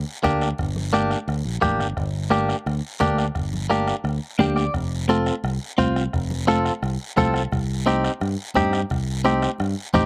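A twangy, bright clean electric guitar carries the accompaniment in this passionate, driving cumbia in G minor at 173 BPM. It is recorded direct and compressed with a slapback echo, plays up front from 0.2 seconds, and slips in a short fill at 4.2 seconds. A punchy fingered electric bass starts alone at 0.0 seconds. A background bombo with a soft beater and slapback echo, soft-handed congas with a bright, thin-skinned tone, and a raspy, close guiro fill out the percussion. The harmony moves from Gm to F to Cm, and the dry outdoor sound keeps this short cut from a longer piece immediate.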